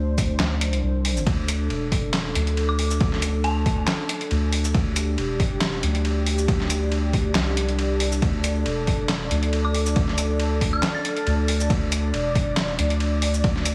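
A half-time deep dubstep groove at 138 BPM with a light swing carries this cavernous, meditative excerpt, where a punchy overdriven electronic kick and a gritty, pitched-down trip hop sampler kit of snare, handclaps, hi-hat, ride cymbal and shaker sit over a round, up-front dub sub bass and a moody detuned sawtooth pad holding a sustained D5 chord with chorus, while an eerie inharmonic FM bell warbles through dub echo in the background at 2.7 and 9.6 seconds, all framed by light reverb and a heavily compressed radio-like sound.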